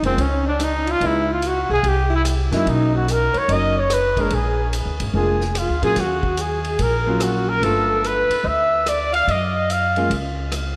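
A relaxed small-group swing and bop fragment in F# major at 145 BPM features the up-front trumpet carrying the melody with light vibrato, scooped notes and a diffuse ambient delay, over a vibrato-tinged alto saxophone second line set in the background, clear concert grand piano accompaniment, a woody, thumpy pizzicato upright bass and a vintage drum kit with dark cymbals, punchy kick and rim clicks, all bathed in a dreamy church reverb as the changes run from F#maj7 through C7#11 and D#m9 to G9.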